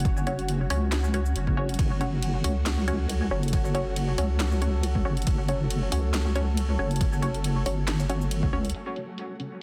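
At 138 BPM in a half-time 4/4 with a light 55% swing on the sixteenths, this dark, meditative deep dubstep drop in F# phrygian, cut from a longer piece, rests on an overdriven, punchy electronic kick and a garage kit of handclaps, shaker, ride cymbal, warm hi-hats and a cracking snare, its hats, snare, percussion and cymbals all low-pass filtered and set in studio reverb. Up front, a deep, soft wobble bass built from detuned square and sine tones holds a compressed, chorused low end until 8.7 seconds. Behind it, a moody sawtooth pad with a sub octave and slow attack sustains chords in the background, thickened by chorus and its own reverb. A muted dub chord stab enters at 0.3 seconds, its plucky filter and short decay colored by phaser and dub echo into a mellow, evolving tone. A flickering, grainy granular texture drifts low in the mix, and the whole sits in a dry room with a dense, heavily limited modern master.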